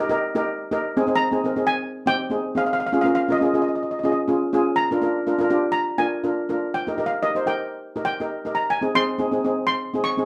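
Straight 4/4 calypso at 122 BPM, sunny and bouncy, in Ab major and cut from a longer piece. A double seconds pan, struck with medium rubber sticks, opens at 0.0 s with accompaniment between C4 and C5, its sound close-miked, dry, full and up front. At 1.2 s a lead pan enters above it, carrying the melody from Eb5 to Db6 in a metallic shimmer, also played with medium rubber sticks and placed up front. From 0.8 s the harmony moves through Ab, Db, Bb7 and Eb before landing back on Ab. Both pans ring together to the end at 10.3 s, set in a wet small room with a short reverb tail that puts the listener a little further back.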